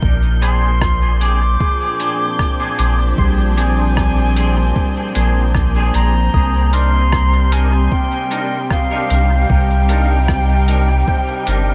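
Spacious and hazy, this ambient dub passage, cut from a longer piece, moves in an unhurried 4/4 with a light swing, resting on a Bb9 chord before shifting to Cm9 at 6.3 seconds. A deep, round sub bass sits up front with a soft, sustained tone, while a muffled, pitched-down kick thumps beneath it and a compressed lo-fi kit of hi-hat and rim click ticks away in the background with reverb and dub echo. A clear symphonic string section holds smooth, bowed chords with light vibrato, and a bubbling, resonant sawtooth texture with random filter steps shimmers high above through chorus and reverb. From 0.4 seconds an airy concert flute carries the melody with gentle vibrato and a soft attack, trailed by dub echo. A twangy pedal steel guitar, played with fingerpicks and slide and heard in volume swells, spins arpeggios in the background, while a bright, clean electric guitar adds picked stabs through chorus, a low-pass filter and echo, all over a bed of light reverb and vinyl crackle.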